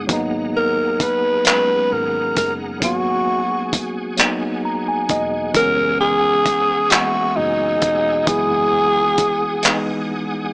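A mellow tine electric piano and a bright, reedy tonewheel organ with key click, chorus vibrato and a fast rotary speaker open this late-night, yearning slow six-eight R&B excerpt, over a dark, foam-muted fingered bass sitting in the background. A cloth-damped, thuddy drum kit of handclaps, hi-hat and tight kick enters up front with a muffled, saturated, rolled-off sound, and at 0.6 seconds a growling tenor saxophone takes the jazz-style solo melody with breathy subtone, rasp, vibrato and scooped notes. The electric piano adds a fill from 4.2 seconds, all in a lo-fi small room with light reverb and a small-speaker character.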